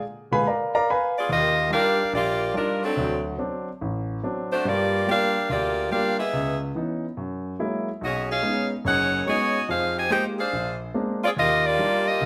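A bright, close-miked saxophone section carries the melody with light vibrato, entering at 1.2 s after a brief solo opening from an intimate concert grand piano, whose deep bass, audible action noise and long sustain support the joyful, energetic swing of this short jazz excerpt set in a large studio room.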